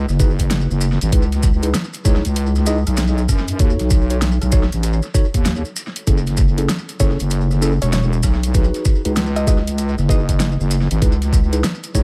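Glitch hop at 97 BPM with a swung 16th feel in F# dorian, this swaggering, funky excerpt rides a heavy, saturated wobble bass and an overdriven, knocking electronic kick up front, while a pop drum kit adds a fat snare, warm hi-hats and rim clicks, grainy vintage maracas shake through tape echo, a mellow tine electric piano pumps its stabs over chords moving from C#m7 through B7, F#m7 and G#m7, a barely audible downlifter opens the piece, and a woody wave-folded pluck melody sits in the background, returning at 7.0 seconds, all bathed in an echo-heavy digital ambience.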